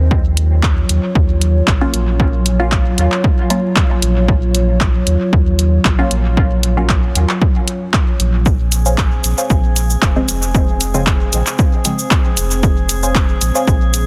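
Dense, heavily limited and dusted with vinyl crackle, this cavernous, meditative dub techno excerpt at 115 BPM rides an overdriven, punchy electronic kick up front and an overdriven deep house kit of handclaps, hi-hat and shaker with dub echo, beneath a round sine sub bass and a moody, wave-folded analog pad that both pump with the sidechain as the harmony moves from Ebm9 to Bbm9 at 8.5 seconds, while a muted, detuned chord stab with phaser and dub echo flickers through, a bright, glassy harmonics texture drifts in at 8.7 seconds, and a second, chorused chord-stab riff joins in the background at 8.9 seconds.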